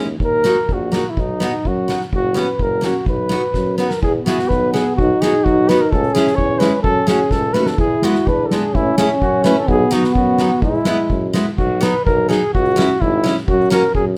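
Alpine folk with a jolly, festive air and a loose, rubato feel in two, as a mellow, smooth-topped flugelhorn carries the melody up front over a full-bodied picked jumbo acoustic guitar and a vintage-toned tuba bass. A soft-mallet drum kit with dark cymbals, a fat snare and a punchy kick keeps the dance going and adds a fill at 3.5 seconds. A warm euphonium with light vibrato joins as a second line from 4.0 to 11.3 seconds, all set in a moderate studio reverb in this excerpt from a longer piece.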